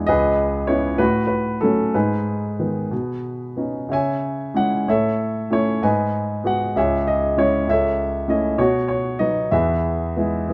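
Close, detailed microphones and a light reverb put a concert grand up front, its tone open and rich in deep bass. This is a short passage of lyrical solo classical piano, cut from a longer piece, and its mood is calm and warm. In 6/8 with a rubato feel, it moves at roughly 60-67 BPM counted in dotted quarters, spanning C#2 to G#5 across its 10.5 seconds. The harmony opens on C#m7 and drifts through F#m/A, G#m and Badd9 before returning to C#m. From there it passes through A, G#m7, C#m and A/C#, reaching B and finally resting on E at 9.5 seconds.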